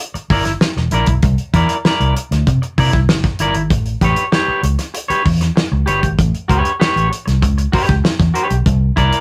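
Funk at 97 BPM in A mixolydian, gritty and energetic, this brief cut from a longer piece sets a twangy, slightly broken-up electric guitar accompanying from E4 to D5 over a dark, round, foam-muted fingered bass with tube saturation and a damped, dry 70s drum kit with a fat snare and tight kick, all up front in a rough rehearsal-room recording with light reverb, moving from C9 to a rootless A9 at 3.7 seconds and back to C9 at 8.7 seconds.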